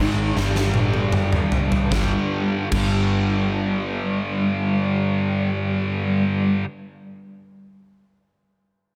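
Heavy and driving, this short hard rock excerpt moves at 75 BPM in a straight 4/4, built on a G5 chord. Two overdriven semi-hollow guitars play the riff throughout, one sitting in the background and the other colored by a phaser, and a scooped, double-tracked high-gain guitar with distortion adds a bright, distorted edge to the same riff. Underneath, a vintage foam-muted electric bass played with the fingers gives a dark, round low end. A gated 80s drum kit sits up front from 0.4 to 2.9 seconds, with bright cymbals, a tight kick, a medium-tuned snare and toms in an airy stone-room sound, and its fill runs until 1.9 seconds while the opening slows down. Light reverb and a dense, heavily limited modern master shape the overall sound.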